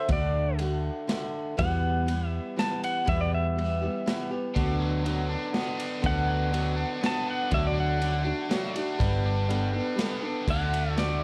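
This folk rock and heartland rock excerpt in 3/4 has a jangly, nostalgic mood and a straight feel. A clean, compressed pedal steel guitar carries the melody as a solo from the opening, played with fingerpicks and slide, with volume swells and a warm tone. Beneath it, an up-front picked steel-string acoustic guitar plays accompaniment with audible finger squeak, while a dark, round hollow-body short-scale electric bass sits amped and forward, and a polished, airy country drum kit adds a punchy kick, medium-tuned snare, ride and crash. At 4.5 seconds a bright, biting, overdriven guitar enters, double-tracked, playing a riff. Light reverb and a worn, warbling cassette-tape character with pitch drift give the whole recording an old-tape feel as the chords move from D through Em, Bm/D and Gadd9 before returning to D.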